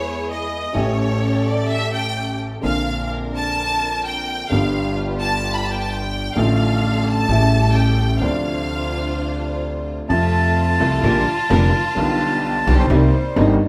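Elegant and playful, this tango excerpt moves at 129 BPM in 4/4 with a rubato feel, starting in D minor and shifting to F major at 10.1 seconds. A clear, focused violin section, bowed with vibrato and set at a distance, carries a solo second line through the opening until 10.1 seconds, over an upright piano accompaniment that sits up front with a woody, long-sustaining tone. Beneath them, a pizzicato upright bass with steel strings gives a warm, woody low foundation, while a lush, bowed string section adds stabs from the background. At 10.1 seconds a reedy, dark bandoneon enters up front with a smooth melody, as the harmony moves through chords such as Fmaj7, Bb6 and Cm7. The band plays live together in one room, wrapped in a wet studio reverb.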